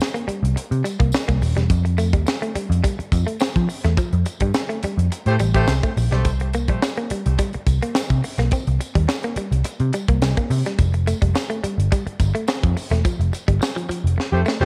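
A dark, round, foam-muted picked bass sits up front in this driving, funky 106 BPM excerpt alongside a crisp fusion kit with a high-tuned snare and tight kick, a bright, twangy clean guitar riff, a jingly tambourine far in the background, and a distant horn section with light vibrato and tape echo that appears briefly at 5.3 and 14.3 seconds amid band accents, the second time over a closing drum fill.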